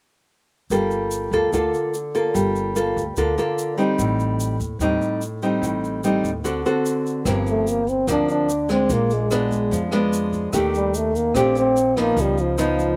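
Bossa nova in a wistful, intimate mood, cut from a longer piece, opens at 0.7 seconds with prominent fingerpicked classical nylon-string guitar, woody pizzicato upright bass on steel strings and a grainy, bright egg shaker close by. At 7.3 seconds a jazz brush drum kit enters in the background, distant and roomy with a boomy kick, hi-hat and rim click, as the harmony moves through Gm7, Bb7b9, Ebmaj9#11 and C#9. From 7.5 seconds a breathy, mellow trombone carries the solo melody up front with light vibrato, all in a dry space.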